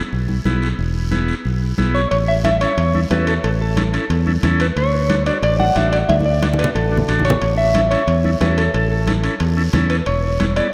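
Sunny and festive, this cumbia excerpt moves at a brisk 181 BPM in straight 4/4, in A major with a slightly high tuning. A buzzy, vintage combo organ with light vibrato opens the track at 0.0 seconds, joined almost at once by a round, up-front fingered electric bass, a raspy guiro set back in a large room, and close, dry congas that ring softly beneath the rest. At 1.9 seconds a dark, clean electric guitar steps forward with the melody, its fingered tone touched by spring reverb, and the timbales arrive just after, their metal-shell ring sounding band-limited and old-fashioned in the background. A drum fill runs from 6.1 to 7.4 seconds as the harmony moves from D back to A. The whole recording sits in a vast, echoing space with a long cathedral reverb, giving the dance groove a grand, airy halo.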